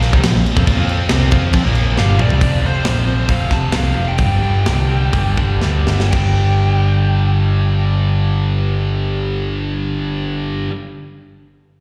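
A driving, heavy hard rock fragment opens with a crunchy overdriven guitar with slapback echo sitting in the background, a bright high-gain guitar and a very quiet, double-tracked sludgy guitar (gone by 2.4 seconds) all riffing over a round, punchy picked bass and a tight, up-front metal drum kit whose fills lead into a slowing stretch before it drops out at 6.2 seconds, while from 2.0 seconds a dark, smooth lead guitar sings a high melody through overdrive, slapback echo and digital delay, the whole performance heard as a live gig through the venue's PA with small-room ambience and recital-hall reverb.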